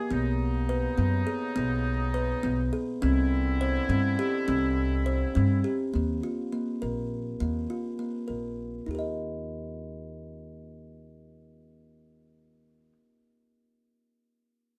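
Contemporary chamber music in 5/8 with a restless, playful mood, cut from a longer piece. A mellow, ringing kalimba plays arpeggios up front throughout, while a thumpy pizzicato upright bass carries the low line, and a clear, tight woodwind section with light vibrato holds sustained chords until 5.9 s. The close, detailed sound has light reverb, and the harmony moves through added-ninth and suspended chords before settling on Eb at 8.9 s.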